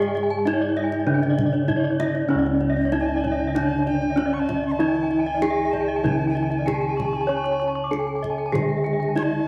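Set in a straight, even 4/4, this brilliant, shimmering passage of Balinese gamelan is cut from a longer piece. An up-front bronze metallophone carries the melody with a ringing, boxy small-room tone, its paired tuning producing shimmering beats, while a darker, smooth metallophone holds the accompaniment in the background. Two more metallophones spin bright arpeggios above: one close-miked, dry and full, the other airy and trailed by tape echo. Bossed gongs supply a round, beating, vintage, band-limited bass near the front, and a tight kendang struck with hard hands sits further back. At 3.0 s a breathy alto recorder enters with a woody second line, marked by vibrato, tongued chiff and a warm close-miked presence, shortly after the music moves into a new section at 2.3 s, all within a wet echo-chamber reverb.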